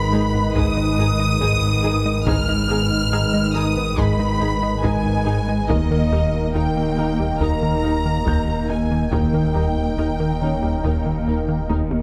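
This tense, relentless cinematic cue, cut from a longer hybrid orchestral and electronic film score, opens with lush bowed violins carrying the melody over a softer second violin line, while mellow French horns and a chorused analog pad hold sustained chords. Underneath, a round analog bass riff sits on dark, woody double basses, expressive cellos with portamento and a deep sine sub bass, and violas add vibrato-rich accompaniment in the background. A bright, detuned analog pluck spins very quiet arpeggios, and a vintage-toned grand piano adds texture through tape echo. Close, dry taiko drums struck with hard sticks enter at 0.6 seconds at a very low level and close with a fill from 11.7 seconds. At 70 BPM in 4/4, the harmony moves from Abm to Eb at 5.7 seconds, heard in a moderate concert hall reverb through close, detailed microphones.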